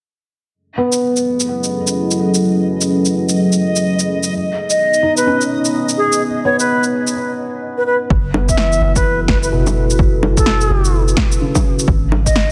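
A felt-muted upright piano opens this wistful, ghostly future garage passage, its soft, intimate tones pumping under a low-pass filter sweep and tape echo, soon joined by swung electronic shaker, bongos and a fat, overdriven snare in a small room. A deep, detuned analog pad with chorus and a reversed, granular swell fill in the shadows before an airy baroque flute with a crisp attack and analog delay carries the melody up front from 4.7 seconds. After a brief break, a round, soft 808-style bass, pumping with the sidechain, and a punchy, overdriven kick arrive at 8.1 seconds beneath a lush hall reverb and a dense, heavily limited master.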